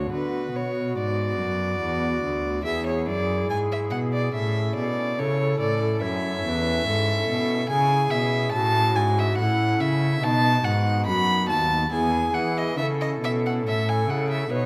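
From the first moment, a serene, flowing baroque-style sonata movement in A major unfolds at 71 BPM in a straight 3/4, with all four parts sounding together throughout this 14.7-second portion of a longer piece. A close, up-front violin with a rich gut-string, period-style tone carries the second line above an airy, woody tenor recorder melody with audible tongued chiff. Beneath them, a nasal cornet solo stop on pipe organ with tremulant fills the accompaniment, and a reedy cello with an airy bow anchors the bass, all set in a wet recital-hall reverb.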